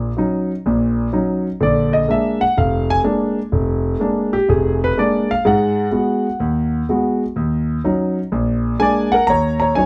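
A concert grand piano plays alone in this smoky, swinging solo jazz excerpt in Eb minor, moving at 125 BPM in a swung 4/4 and spanning a range from F1 up to Bb5. Its tone is intimate and natural, with deep bass, audible action noise and an up-front presence, set in light reverb within a dark production. The harmony cycles through Ebm7, Bb7 and Abm7 before settling back on Ebm7 at 9.3 seconds.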